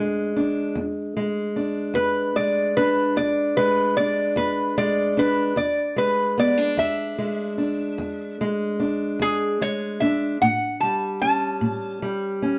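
A lap resonator guitar carries the melody in this swaggering, laid-back acoustic country blues, its metallic, nasal slide lines played with a steel bar and fingerpicks, entering at 1.9 seconds and sitting up front in the high register. Beneath it, a fingerpicked steel-string parlour guitar supplies a dark, boxy accompaniment from the very start, ranging down to the low E. The tune moves at a relaxed 50 BPM in a straight 12/8 feel, in E mixolydian, resting on an E7 chord before shifting to A7 at 10.4 seconds. Both guitars sound close and present, with light reverb and a warm production around the duo. This brief passage, cut from a longer piece, lasts about 12.6 seconds.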